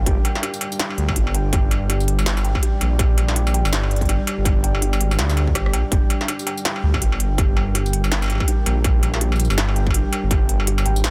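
A dark, rumbling detuned saw bass sits up front in this excerpt of half-time drum and bass, holding low on G minor at 164 BPM with a swung sixteenth-note feel. Around it, a distorted electronic kick and an industrial kit of crisp hats, clanging snare, rim click, tambourine and struck metal play from 0.1 seconds, both with a tape-toned character from being re-recorded in a small room, and a brief drum fill lands at 5.6 seconds. A felt-muted upright piano plays soft, intimate arpeggios through a dub echo, mellow and muffled beneath the beat. Deep in the background, a moody ambient pad holds sustained chords with slow attack and long release, thickened by chorus and its own reverb, roughened by vintage 12-bit sampler grit and pumping against the sidechain. The mood is spacious and cinematic, and the whole passage comes in a dense, heavily limited modern master with little reverb on the overall mix.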